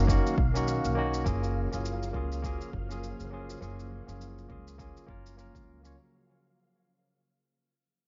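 Warm and smooth, this six-second excerpt of sunset chillout moves at 102 BPM in F# major with a lightly swung sixteenth feel, drifting from Bmaj7 to F#maj7 while fading out throughout. A bright, barky tine electric piano sits up front with a low-pass filter and delay, over a woody, growly pizzicato upright bass, a punchy layered electronic kick, and a gritty, tape-toned shaker. In the background, a silky vintage string machine holds soft chords through phaser and ensemble chorus, all within a dark production lit by light digital ambience.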